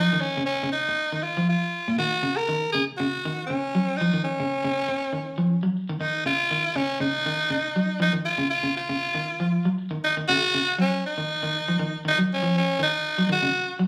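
This afrobeat cut from a longer piece moves at 119 BPM in 4/4, with a driving, funky mood and a light 16th-note swing. A raspy tenor saxophone carries the melody up front, its gritty, edgy tone punchy and present, with vibrato and a pop-style solo approach sitting between Db4 and Bb4. Beside it, a twangy electric guitar at the edge of break-up plays fingered arpeggios in a low register from Bb2 to Gb3, also placed up front. The harmony moves from a rootless Bbm to Dbsus2 at 2.0 seconds, and the same section comes round again at 10.0 seconds before both parts stop just before 14 seconds. The band plays live in one room, with a stone-room reverb and studio ambience around them, and the instruments are tuned slightly flat to A4 = 436 Hz.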